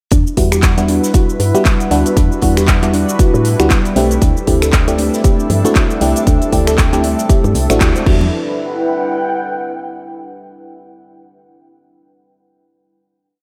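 Hypnotic and late-night, this deep house piece in E minor moves at 117 BPM with a swung 16th feel, driven by a punchy four-on-the-floor electronic kick and crisp programmed hats, claps, snaps, shaker and crash, joined by a very quiet looped acoustic breakbeat and background congas entering at 5.0 seconds, while a woody syncopated FM bass riff, mellow dotted-rhythm FM electric piano chords with phaser and dub echo, a gentle arpeggiated pluck with delay, a moody sawtooth pad and a breathy pad all pump against the kick through Em9 and D9sus4 before a band accent at 7.8 seconds and a closing Emadd9 chord where the airy pad rings alone until 10.3 seconds.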